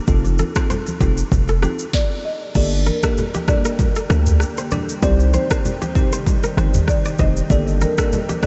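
A swung sixteenth-note groove at 97 BPM drives this sultry, smooth afrobeats excerpt in G minor, built on an overdriven, up-front electronic drum kit with deep kick, sharp snare, rim click, shaker, toms and crash, a punchy, heavy 808-style bass, and low-tuned, hard-hand congas in the background. A bell-like tine electric piano with analog chorus and a bright, fingerpicked kora riff with delay ring over the beat, while a woody, dark marimba melody with delay enters at 1.9 s as the music pauses for a brief stop, and a glassy, ethereal FM pad with sidechain pumping drifts in at 3.4 s. The dreamy mix is soaked in huge ambient reverb as the chords move from F7 to Gmadd9 and Cm.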